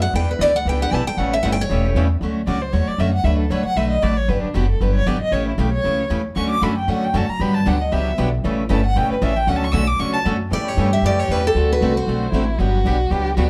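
Acoustic string swing in the jazz manouche vein, a swinging and charming cut from a longer piece at 231 BPM in D major, with a picked steel-string guitar opening the melody with audible finger squeak and a plate-reverb sheen before a close, bowed violin takes over at 2.5 seconds with vibrato, portamento and a soft, expressive attack. Underneath, a woody, thumpy upright bass on gut strings sits up front beside a second picked steel-string guitar in accompaniment, while a boxy swing-style guitar with fresh strings sits in the background. The lead guitar returns at 10.5 seconds over a move through A7 and D7 to Gmaj7, all heard from further back in a club room with a short, wet reverb.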